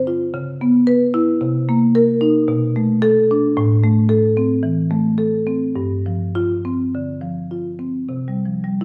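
Rubato in 4/4, this playful fragment of a contemporary classical piece for solo marimba has medium mallets drawing a woody, boxy tone from padauk bars, set up front in a wet stone room reverb while the harmony moves through minor seventh chords and A minor to a G7sus4 at 5.8 seconds before settling on C5 at 8.1 seconds.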